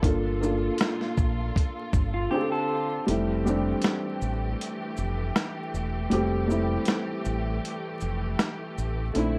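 A dusty, crackling sound sits over this short lo-fi hip hop clip, a dreamy, cosy fragment in F major at 79 BPM with a gentle swing on the sixteenths. A gritty, compressed sampler-style drum kit sits up front with a thumpy kick, medium-tuned snare, hi-hat and shaker, though the whole kit drops out from 2.3 to 3.1 seconds and the kick stays muted from 3.1 seconds onward. Beneath it, a deep, round fingered electric bass holds the low end, while a felt-muted upright piano plays soft, mellow accompaniment filtered through cassette tape. A distant, lush string section bowed with vibrato sustains chords under plate reverb, moving from Gm9 through F6 to Fmaj9. Briefly, from 2.1 to 3.0 seconds, a slightly broken-up electric guitar through a small old amp adds a picked second line, softened by tape echo and plate reverb.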